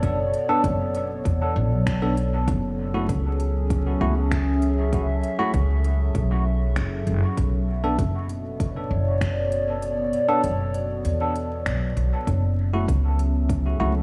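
Ambient dub at 98 BPM in F# minor, meditative and spacious, cut from a longer piece: a warbly, nostalgic tape-like pad sustains Bm7 and F#m7 chords up front through chorus and phaser, a woody, thumpy pizzicato upright bass anchors the low end, bell-like, barky tine electric piano stabs enter at 0.5 s with dub echo, and a deep, overdriven electronic kick sits in the background with crisp hi-hat and finger snaps, the kick dropping out from 9.8 to 12.3 s, all over vinyl crackle and small-room ambience.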